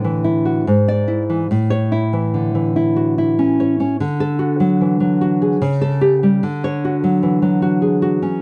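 A lone nylon-string guitar opens this short excerpt from a longer romantic piece for solo classical guitar, its warm, thumb-plucked tone sitting up front in a dry, close recording with a 1970s studio character. The mood is tender and sunny, moving in an unhurried three-beat metre with a freely breathing rubato feel. Its harmony drifts from A through E7/G# and back to A, then settles toward D by 4.0 seconds before closing on a Dmaj7 at 6.4 seconds.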